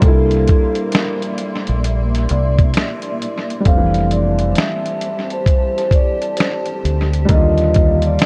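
A gritty, compressed sampler-style drum kit with a thumpy kick sits up front beside a round, dark dub bass in this nostalgic, dreamy lo-fi hip hop excerpt, while a ringing soft-mallet vibraphone carries the melody over a woody, vintage upright piano coloured by cassette tape and tape echo, and a blurred, evolving granular pad hovers in the background as the harmony moves from C9 to Fmaj9 at 3.7 seconds and on to Ebmaj9 at 7.3 seconds in an echo-heavy mix.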